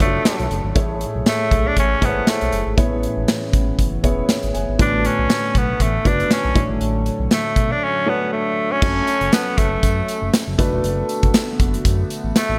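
A lightly swung 4/4 groove at 119 BPM, driven by a punchy, up-front studio kit with medium-tuned snare, hi-hat and crash, carries this uplifting, romantic stretch of 1980s-style pop through Dmaj7, Amaj7 and C#m7 changes, later turning to F#m and D6. A raspy, gritty tenor saxophone leads with light vibrato and delay over a dark, mellow concert grand with subtle chorus, a smooth synth bass and a shimmering pulse-width pad tucked in the background. A very quiet, jingly tambourine joins at 8.8 seconds, and the whole cut from a longer piece sits in a bright digital production with lush hall reverb.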